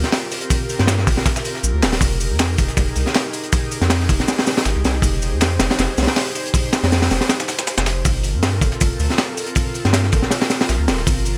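The recording sits in a small room, with a dark, atmospheric mood and the energy of drum and bass and jungle, cut from a longer piece. Up front, a crunchy breakbeat kit drives the groove with a punchy kick, a high-tuned snare and hi-hat, its saturated, gritty tone softened by a rolled-off top. Behind it, a dusty sampler-style kit adds hi-hat, shaker and a medium-tuned snare, compressed and tape-toned, high-pass filtered and re-recorded in a large space so it sits well in the background. A soft, round dub sub bass holds the low end up front with tube saturation, while an airy, breathy pad with chorus and a noise layer sustains mellow, detuned chords over a Gm11 to Fm11 movement. A brief break arrives at 7.3 seconds before the harmony returns to Gm11 at 8.1 seconds.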